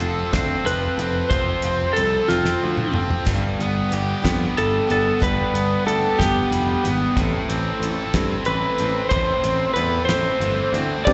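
Warm and hopeful, this excerpt of folk rock and heartland rock moves in 6/8 over F, G and A minor. A damped 70s drum kit with a fat snare and tight kick, a growly picked electric bass, a full-bodied jumbo acoustic guitar and a biting, double-tracked overdriven guitar riff support the melody, and a drum fill lands at 2.3 s. A twangy pedal steel glints in the background for the opening 0.7 s before an up-front, slightly broken-up electric slide guitar takes the melody, both carrying slapback echo and digital delay, and a mellow, round tonewheel organ with slow rotary speaker arrives only at 11.1 s, all sounding like a live gig heard through the venue's PA, dulled at the top and bathed in recital-hall reverb.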